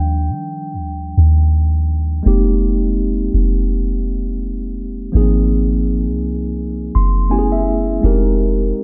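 Swung sixteenths at 83 BPM in 4/4 carry this late-night, sensual contemporary R&B fragment, tuned to A4 = 438 Hz, where a mellow, clean tine electric piano plays a solo phrase until 2.3 seconds and a fill from 6.6 seconds over chords moving from Ebmaj7 through Fm11, Ab6 and Gbm11, while a deep, round, dark 808-style bass with a fast attack and decaying notes sits up front beside it within a light reverb and digital ambience.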